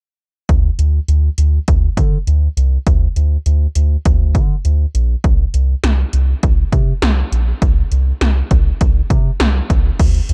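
Dry and dark in tone, this short synth-pop passage cut from a longer piece has a driving, nocturnal mood in a straight 4/4. A round, deep analog bass with a moving notch and fast-attack, decaying notes runs from Bb1 to D3 up front, while 80s-style electronic drums with a punchy kick, gated snare, metallic hi-hats and crash cymbal sit close beside it. Both parts play together from 0.5 to 10.3 seconds.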